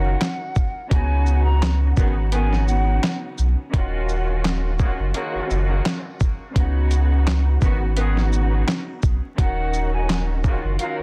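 A round, deep sine sub bass sits up front, holding the low end of this moody, dark boom-bap hip-hop excerpt in Eb minor at 85 BPM, with a light 16th-note swing and tuning slightly above standard pitch. Beside it, a gritty, compressed sampler-style drum kit punches through with a thumpy kick, a medium-tuned snare, handclaps, hi-hat and shaker. Beneath them, a muted string section bowed con sordino spreads a veiled, lush bed of vibrato that sounds distant. A breathy, tongued concert flute carries an unsteady, vibrato-laden melody with delay, first stopping at 3.2 seconds and then returning at 9.4 seconds. From 2.0 seconds, a warm, roomy horn section adds pop-style stabs with light vibrato and delay, far back in the mix. The harmony moves between Ebm7, Db9sus4 and Ebm9 under studio reverb, in a dense, heavily limited master dusted with vinyl crackle.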